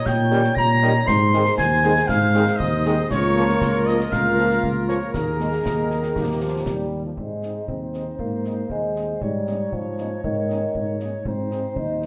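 A military-style march for wind band in a straight 2/4, festive and rousing, cut from a longer piece and set in a large studio with a generous reverb. A mellow cornet carries the melody with light vibrato, sounding distant and roomy, while a hollow, pure-toned piccolo with tongued notes and lifted highs rides high above it until 6.9 seconds. A tight woodwind section adds a second line with gentle vibrato. A dark tuba with a smooth top sits up front on the bass, and a French horn section and a clear trombone section hold the accompaniment and sustained chords in the background, the trombones stopping at 7.1 seconds. At 7.2 seconds a vintage-toned euphonium with vibrato steps forward with its own second line as the harmony returns home, while the concert snare drum, concert bass drum and clash cymbals stay close and dry, the cymbals dark.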